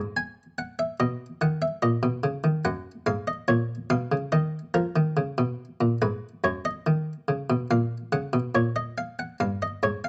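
Joyful and lively, this brief cut from a longer baroque-style two-part invention moves at 71 BPM in a straight 4/4, with a solo buff-stop harpsichord in the Flemish style sounding muted, plucked and lute-like, dry and up front, ranging from F#2 to G#5 over a harmony that travels from a rootless C#m through B, F#, G#m7 and F#/A# to D#7/G at 9.4 seconds, all set in light reverb and a dark production.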